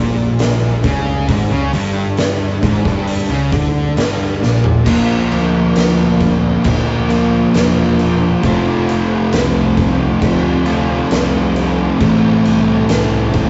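Stoner and doom metal excerpt, hypnotic and heavy, in a straight 4/4 that moves from G5 through Bb, F and Am. Two thick fuzz guitars, one very quiet, grind out the riff with a double-tracked, compressed fuzz guitar set in the background, while a growly, punchy fingered bass with overdrive sits underneath and a very quiet tonewheel organ holds sustained chords through a slow rotary speaker with audible key click. The oversized low-tuned drum kit comes in at 0.4 s, up front with a boomy kick, fat snare, dark cymbals and a pumping stone-room sound, and a fill at 4.4 s leads into the second section, captured as a rough rehearsal-room recording with moderate reverb and a dull top end.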